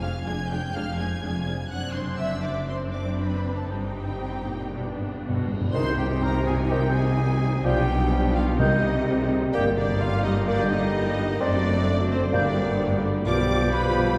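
Strings open this urgent, restless excerpt from a fast, dramatic romantic orchestral movement in C minor at 126 BPM, with lush bowed violins carrying an expressive, vibrato-rich melody over a second violin line, a smooth, distant viola accompaniment, and a clear, focused cello section joined by rich double basses in the bass. The rubato feel keeps the pulse restless as the harmony moves through diminished and dominant chords, while dark cymbals and a tam-tam swell very quietly from 1.7 seconds. Quiet timpani on calf heads, struck with medium mallets and heard close and dry, play a fill from 4.7 seconds that leads into an ensemble accent at 5.7 seconds. There the winds and brass join: a clear solo oboe, a shadowy, very quiet clarinet, hollow flutes high in the background, and a soft bassoon, with mellow French horns and a bright, tight trombone section sustaining chords beneath. A cavernous church reverb places the whole orchestra further back in the room, lending the sweeping C minor drama a grand, spacious glow.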